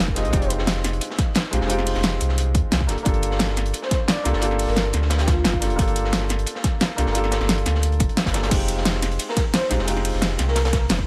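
An overdriven pop drum kit sits up front in this dreamy, soulful liquid drum and bass cut, its fat snare, metallic hats, crash and ride layered over a punchy electronic kick with the same overdriven bite, both set in a small room. Beneath them, a crunchy breakbeat kit adds a darker, gritty hi-hat and snare with a rolled-off top, high-pass filtered, smooth and saturated. A deep, full sub bass with an octave layer holds the low end up front, sustained under a straight 4/4 groove. A felt-muted upright piano plays soft, intimate accompaniment with audible action noise and a tape echo tail, moving between Fm9 and Gm9 before returning to Fm9. A breathy, flute-like synth lead drifts in the background with chorus, vibrato and tape echo, surfacing briefly at the start and again in phrases around 3.8 and 9.3 seconds in this short excerpt from a longer piece.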